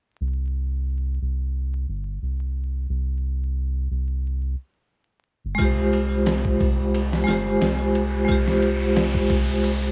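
A bright, metallic vibraphone struck with hard mallets dominates this melancholic, hypnotic trip hop excerpt, close-miked and up front, its ringing tone colored by tremolo and tape echo. A deep, round analog bass opens alone at 0.2 seconds over a C5 chord, its dark, sustained sawtooth-and-sine body sitting up front in the mix. The vibraphone enters at 5.5 seconds, and a sampler-style drum kit follows almost at once as the harmony moves to Fmadd9. The pitched-down, compressed kit has a gritty, overdriven character, with a thumpy kick, a medium-tuned snare and a ride cymbal set in a small room with a cassette-tape tint, all under a light swing. A faint electronic riser creeps in at 6.7 seconds, while light reverb, vinyl crackle and the lo-fi haze of a home cassette recording give the piece a dusty, intimate feel.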